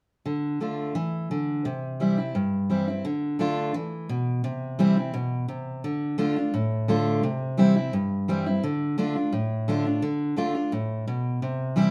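Bluegrass in D dorian at a driving 172 BPM, this lonesome, straight-feel passage is cut from a longer piece and features a single picked steel-string acoustic guitar playing solo from 0.3 to 11.9 seconds. The dreadnought's dark, full-bodied tone sits up front in a reverberant studio room, moving between G2 and F4 over a steady alternation of Dm and C. A brief opening section gives way at 3.0 seconds to a longer second passage that carries the same two-chord cycle to the close.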